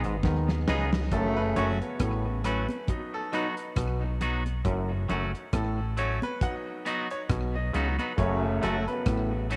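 A swung 68 BPM groove in 4/4 anchors this hypnotic, meditative roots reggae excerpt in F# dorian, where a damped 70s drum kit with a fat snare and slapback echo plays a fill up to 1.1 s beside a deep, round fingered dub bass, an overdriven auto-wah clav riff, a punchy trombone section line with tape echo, very quiet high-tuned congas and a twangy clean electric guitar, before a brilliant grand piano takes a solo of short stabs from 1.1 s, all in a moderate echo chamber.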